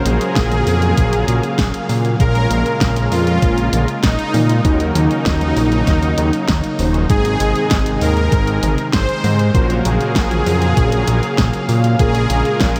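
A smooth, detuned analog pad with chorus and sidechain pumping opens this moody, nostalgic synthwave passage alongside dark, round synth-brass stabs touched with vibrato, chorus and analog delay, both sitting in the background over chords moving from Gbmaj7/Bb through Bbm7, Ebm7 and Ab. At 0.1 s a soft unison supersaw carries the melody through analog delay, while a fat, thick sawtooth bass with filter sweeps and pumping sits up front, and a layered pop kit of fat snare, warm hi-hat and toms in studio reverb enters at the same moment, joined by a thumpy, tape-warm electronic kick from 0.4 s. A huge ambient reverb soaks the whole mix in a dreamy haze, and the clip is cut from a longer piece.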